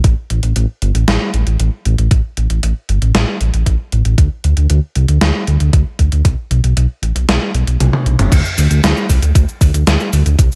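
Synthwave with a nocturnal, nostalgic mood, moving at 116 BPM in a straight 4/4 across this short cut from a longer piece. A dark detuned saw bass rumbles deep in the low register between F#1 and D2, its sawtooth, square and sine layers beating against one another with a fast attack and sustained notes, thickened by tube saturation. An electronic kick drum sits up front with a thumpy, overdriven, sampler-style punch that carries the sound of a small room. A gated 80s digital drum machine supplies cabasa, hi-hat, snare, toms and crash cymbal, its snare bathed in gated reverb and roughened by overdrive. A drum fill at 7.8 seconds leads into a new section at 8.3 seconds, and the whole mix rests in a light reverb.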